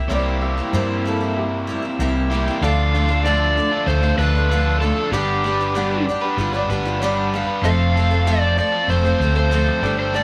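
A straight 4/4 rock groove at 96 BPM in F lydian carries this nostalgic, open-road fragment of a longer piece, with a round, up-front hollow-body bass and a double-tracked overdriven electric guitar riff under a shimmering twelve-string acoustic and a brilliant concert grand in the background, while a very quiet, reedy chamber string section and a woody, boxy upright piano open the piece before an overdriven slide guitar takes the melody at 2.6 seconds over Dm, G and F in a small, lightly reverberant room.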